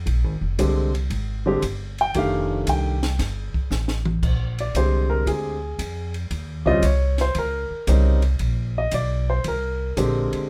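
Jazz piano trio in a playful mood, swinging at 115 BPM in Bb mixolydian over rich thirteenth chords, cut from a longer piece. A steel-strung pizzicato upright bass sits up front beside a compact cocktail kit with dry, dark cymbals, a high-tuned snare and a boomy kick, whose fill at 3.7 seconds leads into an upright piano solo from 4.2 seconds. The intimate, woody piano is present and polished, with long sustain and audible action noise, set in light reverb.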